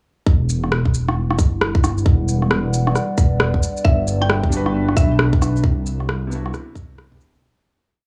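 A ghostly, wistful future garage piece opens on a moody, phaser-tinged analog pad and a rumbling, detuned saw bass, both pumping against a tight, muffled two-step kick and a skittering shuffled shaker and rim click, before a woody FM mallet pluck with cassette-tape coloring and tape echo arrives at 3.8 s and a felt-muted upright piano, intimate with audible action noise and 12-bit sampler grit, adds sparse echoing chord stabs from 4.5 s as the whole piece fades out from 5.0 s.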